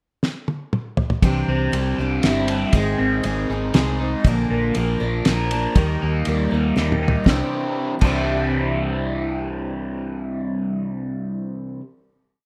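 A crunchy, overdriven electric guitar sits up front with double-tracked picked arpeggios through a phaser, leading this short, hopeful folk-rock and heartland-rock piece in C mixolydian at 119 BPM in 3/4. A damped 70s drum kit with a fat snare, tight kick and dark cymbals plays fills from 0.2 seconds in the pickup bar and again just before the final Cadd9 chord at 7.3 seconds, then stops at 8.2 seconds. A bright dreadnought acoustic strums open chord shapes through Cadd9, Ab, Bb and Eb over a round, hollow-body bass playing driving eighth notes, all in a rough home-demo mix with light small-room reverb.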